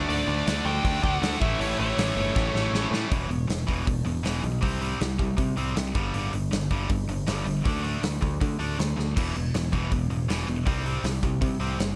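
A straight 4/4 pulse at 159 BPM drives this rebellious, energetic punk rock clip, with a big-room acoustic drum kit up front, its punchy kick and bright cymbals ringing out, while a warm picked electric bass fills the low end. Through the opening 3 seconds, a double-tracked cranked stack guitar and a second overdriven guitar sit in the background. Above them, a nasal lead guitar with a parked wah and tape echo plays the melody over D and A chords as a drum fill arrives. From 3.1 seconds a tight, bright distorted guitar, up front from the start, remains the only guitar on the riff over E5, C5, G5 and D5 power chords, with another drum fill at 9.0 seconds.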